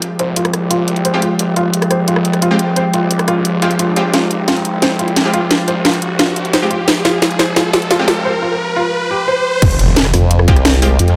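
Dark technical drum and bass in F minor at 175 BPM, aggressive and tense, this cut opens on an Fmadd9 chord as an eerie, metallic FM drone holds filter-swept sustained chords and a muted felt upright piano with audible action noise plays filter-swept arpeggios over a snarling distorted saw bass, cracking overdriven drums with bright hats, bold orchestra-hit-like synth stabs and a background riser, building until the drop at 9.6 seconds brings a tight overdriven kick, an impact and a chorused formant-sweep wobble bass to the front, all set in a lush hall reverb.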